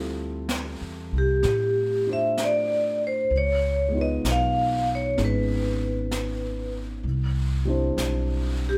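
Ringing, metallic vibraphone with medium hard mallets and a medium motor vibrato carries the melody from 1.2 s in this tender, intimate jazz ballad at 64 BPM with a swung 4/4 feel, set over a mellow upright piano with long sustain, a woody pizzicato upright bass with steel strings, and a brush drum kit with a high-tuned snare entering at 0.5 s, all in light reverb as the chords move from Dm11 through Db9 to Cmaj9 in this fragment of a longer piece.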